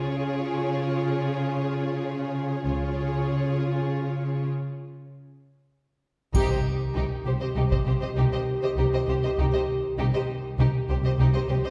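Relentless and epic, this cinematic orchestral film-score passage moves in a broad 12/8 and is heard from further back in a reverberant scoring stage. Two violin sections carry the opening together, one warm and smooth on the melody, the other clear, intense and more distant on a second line, while a rich viola section fills in the accompaniment and a close, up-front cello section holds the bass. A bright, intense double bass section joins beneath them at 2.6 seconds, all of the strings bowed with vibrato and a lush ensemble sound. After a break, the harmony shifts from Db to C minor at 6.3 seconds, where a warm, soft-attacked French horn section enters with sustained chords and the full band strikes an accent. Heavy-stick taiko drums punctuate that moment, and a faint triangle sounds in the background before both fall away, leaving the strings and horns to carry on to the end of this fragment of a longer piece.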